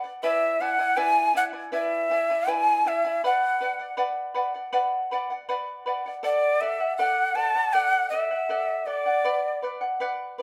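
A straight, unhurried 4/4 pulse carries this wistful, melancholic Andean folk excerpt, moving through E7 and Bm before shifting to D at 6.2 seconds and settling back on Bm. A fingerpicked charango sets a shimmering, bright bed from the opening moment, its double strings, some doubled at the octave, ringing up front beneath the melody. A breathy cane quena enters at 0.2 seconds, its end-blown tone tongued with audible chiff, lifted highs, vibrato and an unsteady edge, and the two players sound as if gathered live in one room with a wet studio reverb.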